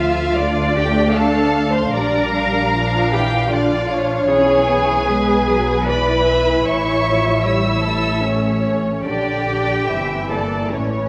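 From the first moment, a muted string orchestra plays together in a slow, elegiac romantic movement in 3/4, its uneven beats stretched with rubato. The distant chamber violins carry the high melody over a lush studio violin second line, close, soft-attacked violas, a lightly vibrating cello section and a smooth-topped double bass line. Every section is bowed con sordino for a dark, veiled, melancholic colour, while the chords move from Dm through Bb and E/B to A before closing on Edim/G, all inside a reverberant recital hall across this 11.1-second passage cut from a longer piece.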